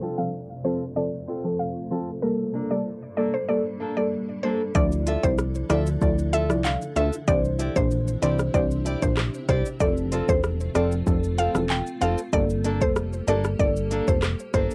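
A woody, round mallet-like synth pluck carries the melody from 0.2 seconds, its bright, percussive tone softened by chorus and an analog delay in this bouncy, summery dancehall groove at 95 BPM in F major. Beneath it, a deep, warbling chord stab with a vintage, detuned character and a fingerpicked nylon-string guitar playing arpeggios share the accompaniment, while a cloudy granular pad holds blurred, evolving chords in the background. Both the chord stab and the pad breathe with sidechain pumping, and a filter sweep shapes the opening 4.8 seconds. At 4.8 seconds a punchy, funky analog bass and an electronic afro-pop drum kit arrive up front, the kit's deep kick, smooth hi-hats, rim clicks, handclaps and shaker roughened by overdrive. The chords move through F, Gmadd9, Dmadd9 and Cadd9, and the whole passage, cut from a longer piece, carries the light reverb and muffled, low-passed glow of a home cassette recording.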